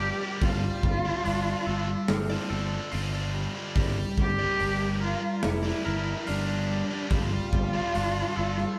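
Brooding and cinematic, this short post-rock passage sets a dark, veiled muted cello up front, singing its melody with vibrato and portamento over a sludgy, overdriven, double-tracked guitar riff and a bright, twangy clean guitar picking arpeggios through spring reverb in the background. A growly picked bass holds the low end while a big acoustic drum kit with a punchy kick and a medium-tuned snare joins at 0.4 seconds, the whole band captured live in one room with a wet studio reverb. The harmony moves from Dm/G to Gm7 and back.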